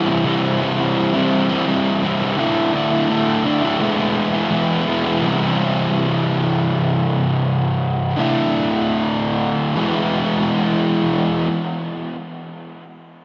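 Cinematic and cathartic, this rock excerpt from a longer piece moves in a straight 4/4 feel. A single electric fuzz guitar carries the solo from the start, its dark, distorted, picked tone double-tracked and placed up front, with tape echo trailing the notes. The harmony cycles through C, Dsus2 and E twice, and the pace slows across the second pass from 5.2 seconds. The guitar stops at 11.5 seconds, leaving the closing stretch unharmonised. A lush hall reverb with a long 3.2-second tail soaks the whole mix, giving it a dreamy glow.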